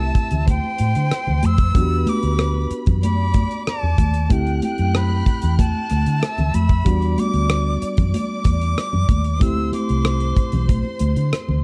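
A breathy, crisp-edged concert flute with vibrato carries the melody in this silky, bittersweet slice of lush 1970s-style soul at 94 BPM in 4/4, tuned to A4 = 436 Hz, before falling away at 10.7 seconds. Beneath it, a woody bowed string section sings a second line, a barky, lightly overdriven electric piano comps through its built-in speakers, and a round, foam-muted fingered bass sits up front with a dry, tight-kicked drum kit playing hi-hat and rim clicks. High-tuned congas patter softly in the background as the harmony alternates between D9sus4 and Em9 under a dark studio reverb.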